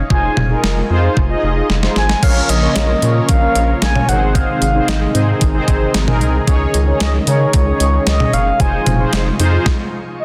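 An up-front, thumpy 12-bit drum machine drives this cool synth-pop excerpt beneath a deep, round analog bass, a horn-like lead with vibrato and delay, dark synth brass with phaser, and a resonant, warbling pad that enters in the background at 2.2 s, set in a lush hall reverb before a stop at 9.7 s.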